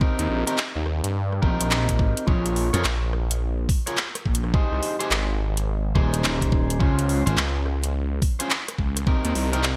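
Glitch hop with a playful, swaggering strut, this short excerpt cut from a longer piece rides a swung sixteenth-note feel in 4/4 over a Cm7, Bbm7, Abmaj7, Dbmaj7 progression. A knocking, tape-warm electronic kick sits up front with studio reverb, joined by a layered dubstep kit of handclaps, rim clicks and metallic hi-hats treated with studio and gated reverb. Underneath, a thick, swirling detuned saw bass with a saturated edge and phaser fills the low end from 0.2 s, while a punchy, bright slap bass cuts in between 2.7 and 7.4 s. An electric guitar at the edge of break-up plays twangy, picked stabs roughened by vintage 12-bit sampler grit, pumping against the sidechain and softened by a low-pass filter and delay. The whole mix carries a light digital ambience and a bright 1980s-style production sheen.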